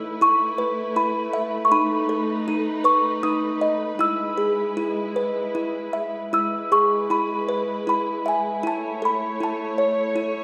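A delicate, slightly out-of-tune music box carries the tinkling lead melody up front in this innocent, sleepy lullaby, cut from a longer piece and set in a gently rubato waltz time. Beneath it, a muted string section bowed con sordino holds dark, veiled chords with vibrato, sounding distant under the box's mellow plucked tone. A long church-like reverb bathes the music, and a new passage begins at 6.3 seconds.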